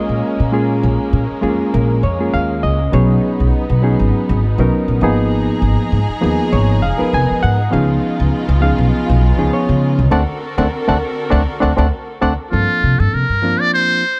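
Slick and nocturnal, this jazz excerpt swings lightly in 4/4, with a barky, reedy electric piano comping up front over smooth bowed studio strings holding sustained chords and a woody, thumpy pizzicato upright bass on gut strings. The band hits an accent from 10.1 s, and the electric piano slips in a fill from 11.3 s. At 12.5 s the strings drop out and a buzzy, thin trumpet with a metal mute takes the solo melody with vibrato, all set in a dark production with light plate reverb on the piano, strings and trumpet.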